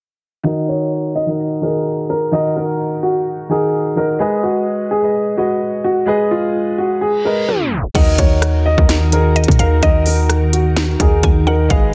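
This hard-hitting, eerie trap excerpt in Eb minor opens with a dark, boxy grand piano, its chords and a tape-echoed melody muffled by a filter sweep over a half-time 128 BPM pulse. A reverse cymbal and a tape stop lead into the second section at 8.0 seconds, where an up-front trap kit with a hard-clipped kick, sharp snare and crisp hats arrives alongside a deep, boomy 808-style bass and a woody, round mallet-like synth pluck carrying a second line. From 8.5 seconds a glassy, ethereal FM pad sustains chords in the background, all within a dense, heavily limited mix and light digital ambience.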